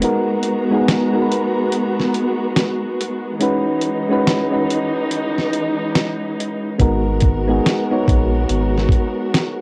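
A gritty, thumpy sampler-style drum kit with a fat snare opens this melancholic, reflective lo-fi hip hop piece, swung on the 16ths, alongside mellow, warbling electric-piano-like synth keys and a lush bowed string section with vibrato over G#m9 and Emaj13 chords, while a round, deep dub sub bass sounds at 0.0 s and returns at 6.8 s, the whole home cassette recording set in light reverb.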